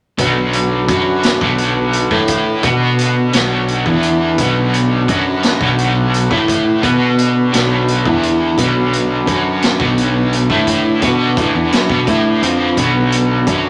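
A moderate studio reverb surrounds this trippy, hypnotic psychedelic rock excerpt, a slow 6/8 groove at 57 BPM that stays on a B minor chord throughout. Up front, a crunchy, double-tracked overdriven guitar plays a picked riff with harmonic tremolo, while a fuzzy, picked electric bass sits underneath and a gritty garage drum kit in a small room plays hi-hat, boomy kick and medium-tuned snare with a rolled-off top. In the background, a reedy, breathing pedal harmonium holds close-miked sustained chords, with all four parts playing together from 0.2 s to about 13.7 s.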